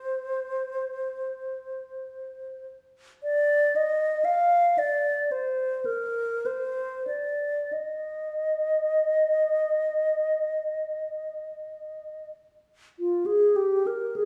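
A wooden-headed alto flute opens alone, its pure tone close-miked and set up front, carrying a lonely, meditative line in this free, expressive classical solo. The playing moves in a loose rubato over a 4/4 frame, with tongued notes and vibrato shaping each phrase within the span from F4 to F5. The instrument's body is warm, and its intimacy comes from the nearness of the microphone. A wet recital hall reverb trails the notes, blended with the ambience of a small room, so the solo seems both near and suspended in space. At 13.0 s the music turns to a new section before the fragment breaks off at 14.3 s, a brief glimpse cut from a longer piece.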